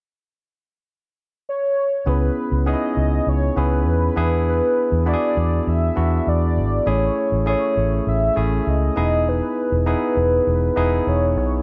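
A velvety, detuned synth lead carries the melody of this nostalgic, moody 1980s-style pop excerpt at 100 BPM, entering at 1.5 seconds with chorus, delay and vibrato. At 2.1 seconds a bright, barky tine electric piano and a round, punchy, foam-muted fingered electric bass with tube saturation join in, the bass sitting up front. They move through C#m7, E7, Amaj7 and Emaj7 in a light reverb.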